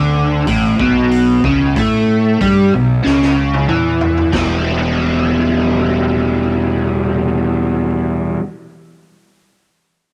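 Trippy and dark, this psychedelic rock excerpt moves at 93 BPM in a straight 4/4 in E dorian, built on a bright, double-tracked overdriven electric guitar riff spinning through a rotary speaker, with a round, fuzzed fingered bass underneath. A raw garage drum kit with a punchy kick and gritty, rolled-off top joins at 0.5 s, rolls through a fill from 3.1 s and drops out at 4.5 s, just after the harmony shifts from Bmadd9 to Em. The small room and light reverb keep the sound close and raw.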